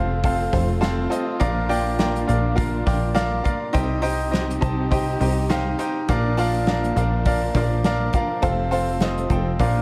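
Bright, polished baby grand piano opens this hopeful piano-driven pop excerpt at 103 BPM in Bb major, heard from the start alongside a plucky, funky analog bass with a ring-modulated sawtooth bite and lush bowed strings with vibrato in the background, while an acoustic country drum kit of punchy kick, medium-tuned snare and hi-hat enters at 0.2 seconds with a gentle 16th-note swing, the piano taking a fill from 4.9 to 6.1 seconds over an F, Bb, C minor, Bb, F progression in a small room with light reverb.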